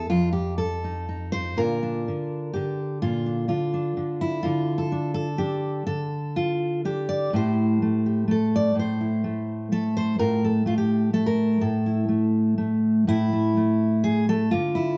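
A stone room's wet reverb surrounds this short folk passage for a single fingerpicked steel-string acoustic guitar, its full-bodied dreadnought tone sitting up front and spanning from low E2 to D5. Reflective and haunting, the solo drifts through 3/4 time with a loose, rubato feel, moving from F7 to Bb before a chordless stretch at 4.4 seconds. It then passes through Am7, F/A and A5, and the opening idea returns at 13.1 seconds, just before the cut at 15.0 seconds.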